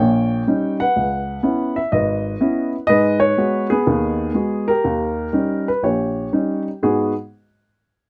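Close, detailed microphones and a dry room put a woody upright piano up front, so every note lands with intimate clarity. This short solo jazz passage, cut from a longer piece, sits in G# minor at 123 BPM in 4/4, with a swung eighth-note feel loosened by rubato. The mood is cool and moody as the harmony moves from D#7 through C#m7 and G#m7, returns to D#7, and comes to rest on G#m7 at 6.8 seconds, where a brief new passage begins. The piano spans from G#1 up to G5 and plays alone until 7.1 seconds, its warm tone carrying the whole performance. The instrument is tuned slightly below standard pitch, with A4 at 439 Hz.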